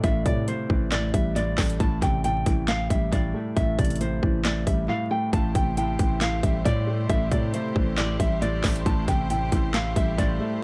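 Hip hop with a trap edge, this short cut from a longer piece moves at 136 BPM in a half-time feel in A minor, its mood melancholic and menacing over a single Am7 chord. A bright, full-bodied nylon-string guitar carries the fingerpicked melody, with audible finger squeak, while a dark, mellow concert grand piano accompanies in its low register; both are softened by a low-pass filter and trailed by dub echo. Beneath them a growling, buzzy 808-style bass hits with a fast attack and decays, and the overdriven trap kit sits up front with a hard-clipped kick, sharp snare, handclaps and metallic hi-hats, also touched by dub echo. After a brief silent gap from 4.9 to 5.3 seconds, a clear symphonic string section enters with bowed sustained chords, light vibrato and a smooth top, at a quiet level. The whole mix is echo-heavy, set in a studio reverb with a layer of vinyl crackle.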